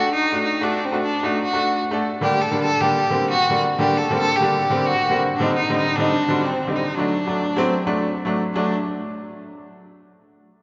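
A violin and an upright piano start together in this festive yet soulful klezmer fragment, cut from a longer piece in a straight four-beat feel. The single bowed violin carries the melody with a rich, smooth, even tone and vibrato, sitting up front in the mid register. The piano accompanies from close by, its bright, woody attack and short sustain giving the harmony a brilliant, natural sparkle. The chords move from D to Gm/D and Cm/D before returning to D at 7.0 seconds, and both instruments stop at 8.7 seconds as a brief new section begins. A wet church acoustic with a long reverb tail surrounds the pair, and the top end of the sound is rolled off, lending the hall a soft, distant glow.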